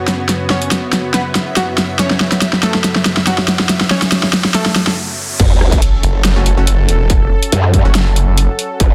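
A half-time 141 BPM groove in 4/4 with a light 16th-note swing drives this menacing, chaotic heavy wobble dubstep excerpt in F# minor. It opens on a build-up where a nasal unison pluck with digital delay carries the melody over a thick, chorused, sidechain-pumped unison pad and a blurred granular cloud pad in the background, while an up-front dubstep drum kit with a huge snare and bright hats plays a fill and a very quiet riser and sub drop slip in. After a brief stop, the drop lands at 5.4 s with an impact, bringing a distorted electronic kick and a wobbling, formant-filtered growl bass; at 6.0 s a snarling, detuned saw bass with a moving notch joins, from 6.4 s airy supersaw stabs with delay flash by, and it all sits in light digital ambience on a dense, heavily limited modern master.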